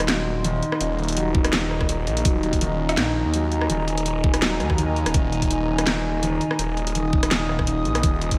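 A dark analog pad holds sustained Ebm chords in its deep, moody register, its chorus and sidechain pumping giving it a breathing motion. Beneath it a felt-muted upright piano plays soft, intimate arpeggios with vintage 12-bit sampler grit and an analog delay. This is a spacious, dark half-time drum and bass piece at 166 BPM in Eb dorian, with a light swing on the sixteenths. A phased, detuned saw bass sits up front, thick and swirling with a saturated edge, while the drum kit brings a cracking snare, rim clicks and bright hi-hats. At 1.3 seconds an electronic kick drum enters with a knocking, layered punch. The whole mix is soaked in a moderate, lush hall reverb, giving this short excerpt a dreamy depth.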